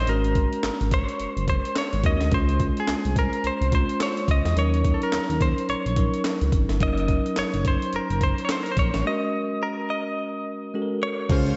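A twangy, up-front clean electric guitar opens this bouncy, slick new jack swing excerpt, carrying the melody with tremolo and analog delay over a bell-like tine electric piano and a smooth, nasal synth bass. A gritty breakbeat-style drum kit joins at 0.1 seconds, with a thumpy kick, high-tuned snare, handclaps, hi-hat and crash cymbal giving the groove a compressed, small-room punch and a swung sixteenth-note feel. The harmony moves through Ab9sus4, Dbmaj7, Ebm7 and Gb6 before returning to Ab9sus4 for a break at 9.0 seconds. At 11.3 seconds a lush studio string section adds brief bowed stabs with vibrato. The whole mix is soaked in a dreamy hall reverb with a soft, rolled-off top end.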